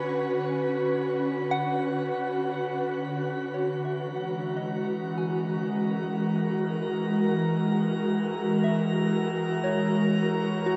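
Luminous and weightless, this ambient excerpt at 59 BPM in F# mixolydian rests on an airy, detuned pad holding sustained chords with ensemble chorus up front, while a soft FM synth bell traces pure arpeggios through diffuse delay, fading in from 3.6 seconds as the pad's filter sweeps and the harmony moves from Bmadd9 to F#9, and a glassy texture of drifting overtones enters at 4.1 seconds, all bathed in a long shimmer reverb.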